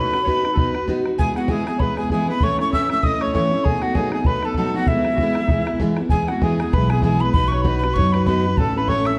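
A breathy, mellow metal whistle carries the melody of this lively, rollicking Celtic reel in E major, singing with expressive vibrato and a soft attack over a swung 195 BPM pulse. A reedy, airy accordion plays a second line beneath it, while an up-front picked steel-string guitar and a boomy, close bodhran drive the accompaniment, and a woody, thumpy pizzicato upright bass joins at 6.1 seconds. The dark production sits in a moderate recital hall reverb, and this cut is taken from a longer piece.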